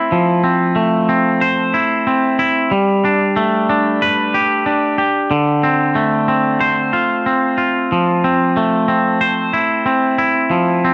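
Cinematic and euphoric, this short rock excerpt moves at 92 BPM in a straight 4/4, set in F lydian. A lone twangy electric guitar carries the whole passage, clean and picked, sitting up front with an analog delay as it moves through Fmaj7, Gadd9 and Dm7 before settling back on Fmaj7 at 7.9 seconds. Light reverb surrounds it in a dark, warm production, and the passage is cut from a longer piece.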